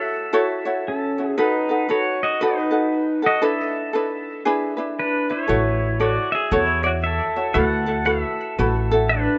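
A clean electric pedal steel guitar, played with fingerpicks and slide, carries the melody with volume swells and tape echo, while a light, fingerpicked acoustic ukulele accompanies it, opening this sunny, dreamy Hawaiian excerpt in A major at a swung 116 BPM. At 5.5 seconds a woody, thumpy pizzicato upright bass on gut strings enters beneath them as the harmony moves from E7 into A6 and D69. The rough home-demo sound has a dull top end, a small-room ambience and light reverb, with all three parts placed up front.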